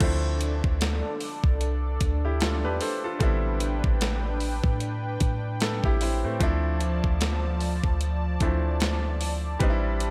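A swung sixteenth-note groove at 75 BPM drives this late-night, sensual contemporary R&B excerpt, with a sampler-style 12-bit drum machine up front, pairing a thumpy kick and medium-tuned snare with hi-hat and crash cymbal, while a deep, boomy 808-style sine bass sits just as close. A brilliant, short-sustained grand piano comps through Dm7, Am11 and back to Dm7, changing chords at 3.2 and 6.4 seconds. Beneath it, a smooth, detuned sawtooth pad with chorus holds slow-attack chords in a dry mix.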